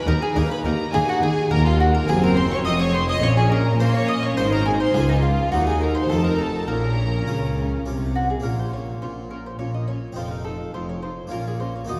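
A mellow, round mandolin opens this driving, dramatic baroque-style concerto movement, heard together with two bowed violin sections and a full, French-style harpsichord strung with two sets of strings. The upper violins carry the melody high above with a rich, focused tone and a smooth top, while the second violins play an even, vibrato-laden second line in the mandolin's register. At 0.1 seconds the violas, cellos and double basses join in triple metre: the violas sit distant in the background, the warm cellos add expressive portamento with a soft attack, and the double basses anchor the bottom from afar. The picked double strings of the mandolin carry the melody alongside the bowed ensemble, with the harpsichord filling in the accompaniment. The music moves into a new section at 8.4 seconds. The whole ensemble sits in a wet concert-hall reverb, and the passage is cut from a longer piece.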